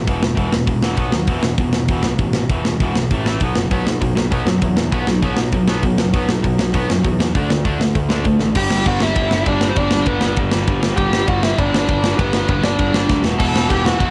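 A home cassette recording with light reverb carries this raw, aggressive punk rock excerpt at 198 BPM, where a tight, bright distorted guitar riff and a growly fuzz bass drive over an airy, up-front metal drum kit with bright cymbals and a tight kick, a biting overdriven second guitar joins in the background at 3.7 seconds, and after a drum fill at 8.4 seconds a smooth overdriven lead guitar takes up the melody over a G chord.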